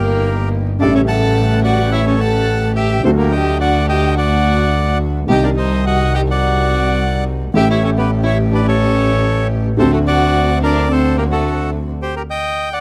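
A rubato 4/4 pulse around 107 BPM carries this sultry, passionate tango fragment, cut from a longer piece and tuned slightly low at A4 = 439 Hz. Up front, a reedy, bright bandoneon takes the melody between F#4 and A5, close-miked and dry, while a single bowed violin adds a second line below it, warm-toned with vibrato, soft attacks and expressive portamento. A clear double bass, bowed by one player with light vibrato and an airy, nasal, earthy edge, sits close and prominent, and further back a woody, worn upright piano, slightly detuned with short sustain, fills in the accompaniment. A rich chamber string section plays stabs in the background, sul tasto with a pure, floating softness. The harmony moves from Eb/G through A7, D, Cm, A7 and D7. The violin drops out at 11.7 seconds and the other accompanying parts at 11.9 seconds, leaving the bandoneon alone through the stop from 12.0 seconds and the G5 close. 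It is all captured in a dry, close 1970s-style studio sound with small room ambience.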